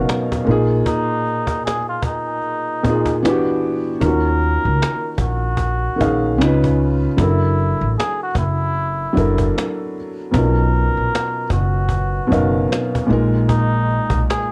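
A veiled, cup-muted trumpet sings a jazz melody with scooped notes from the start, over a soft, boxy felt-muted upright piano with audible action noise and a woody, thumpy pizzicato upright bass with tube saturation, and a snappy cajon joins at 0.1 seconds in this melancholic, hazy lo-fi hip hop excerpt at 76 BPM with swung 16ths, bathed in light reverb and worn, warbling cassette tape, with a break from 0.9 to 4.0 seconds and chords moving from Bb7sus4 through Ebm9 and Gb7alt to Bmaj9#11.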